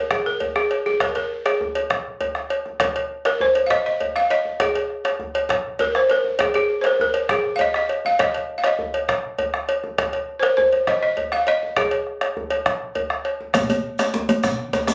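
This West African traditional drum ensemble piece is cut from a longer performance, moving in an earthy, driving 12/8 with a straight feel. A woody, buzzing balafon, struck with rubber mallets, carries the melody close and full at the front of the mix until 12.9 seconds. Beneath it a metallic cowbell sits dry and up front, a deep, dark bombo anchors the low end, and a tight, cracking djembe plays softly in the background. At 13.5 seconds the music shifts into a new section, where a second djembe enters, warm and deep with metal rattles and placed up front, along with a grainy, mellow shekere heard distantly as if from a larger room. The whole performance has the raw feel of a phone recording in a modest room with a short reverb.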